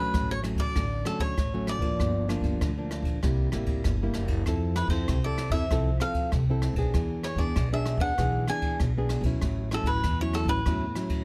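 Joyful and festive, this short fragment cut from a longer samba and choro piece moves at 97 BPM in a straight 4/4, tuned slightly low to A4 = 435 Hz. A picked cavaquinho carries the melody up front with a warm, crisp tone, while a fingerpicked nylon-string guitar in classical style supplies warm accompaniment, also up front. An upright bass played pizzicato on gut strings gives a woody, thumpy foundation and drops out at 10.9 seconds, just before the others finish. A jazz kit played with brushes adds a boomy kick, dark cymbals on the ride and rim clicks, set in an airy, polished studio room. The chords travel from Dmaj7 through Gm7, C7, Fmaj7 and E7 before settling on A6, and the close, detailed miking with little reverb keeps every part clear and present.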